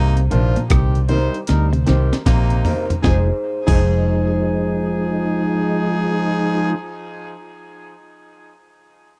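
A dry, close 1970s-style studio sound frames this short cut of meditative, serious roots reggae at 77 BPM in F minor, swung on the sixteenths and moving from Cm7 to Fm7. Up front sit a dark, round, foam-muted fingered bass and a gritty, compressed sampler-style breakbeat kit with a thumpy kick, whose drum fill runs from 1.5 to 3.0 seconds before the kit stops at 3.9 seconds. A very quiet hollow-body guitar plays clean arpeggios that end just before the drums, while a mellow tonewheel organ with chorus vibrato and slow rotary speaker, a fingered electric guitar with tape echo, and a punchy, smooth-topped horn section with light vibrato and tape echo carry the second line and accompaniment.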